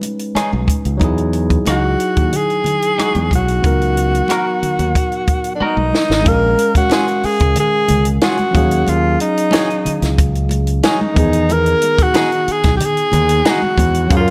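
Smooth and lush, this short excerpt from a longer piece is 1970s-style soul at 92 BPM in a straight 4/4, moving through rich extended chords from B69 and Emaj9 to C#13sus4, then into a second section at 6.3 seconds built on A#m7, D#m11 and Emaj7. A compact cocktail drum kit sits up front with a dry, natural sound, its high-tuned snare, tight kick, hi-hat and rim click carrying the groove and marking the change with a fill from 5.6 to 6.3 seconds. Congas with a thick skin and soft hands stay in the background, while a modern fingered electric bass, bright and direct, joins at 0.4 seconds, as does a twangy, compressed clean electric guitar playing a picked riff through spring reverb. A barky tine electric piano, clean and heard through a combo amp, supplies the chordal accompaniment throughout. At 1.7 seconds a breathy tenor saxophone takes the solo melody in a mellow jazz style, with soft attack and vibrato, sitting up front over a light studio reverb.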